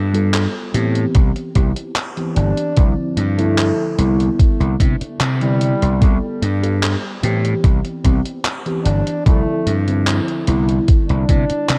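This nostalgic, dreamy vaporwave piece moves at 74 BPM in a straight 4/4. It opens on a mellow FM electric piano and a gritty slap bass, with a detuned 8-bit drum machine of handclaps and hi-hat arriving almost at once. The electric piano, soft, round and dark with a noise layer and a fast, decaying attack, carries C major chords such as G9, Cmaj7, Dm9/C and Em7/C through phaser, lush chorus and tape echo. The overdriven, tube-saturated bass sits up front, bright and punchy. An electronic kick drum joins at 1.2 seconds, thumpy and forward, sharing the drum machine's vintage 12-bit sampler grit and small-room, tape-tinged character. At 2.4 seconds a distant, roomy flugelhorn enters as the solo melody, played with light vibrato in a classical style and coloured by sampler grit and tape echo, while the mix, soaked in plate reverb, gives this short cut from a longer piece a hazy glow.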